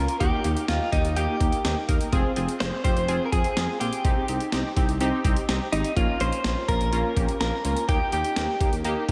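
Nocturnal and cool, this synth-pop excerpt sets a clean, direct-recorded electric guitar melody, glazed in lush chorus, shimmer reverb and diffuse ambient delay, over a punchy, warbling vintage polysynth comp with a sawtooth filter pluck that sits up front. Beneath them a smooth, mellow synth bass with vibrato anchors the changes from Eb through Fm, Cm and Bbm back to Eb, while a gritty, compressed breakbeat sampler-style kit with a thumpy kick and medium-tuned snare drives things from 0.1 seconds. The whole mix is dreamy and soaked in a long hall reverb, its top end rolled off for a soft, hazy sheen.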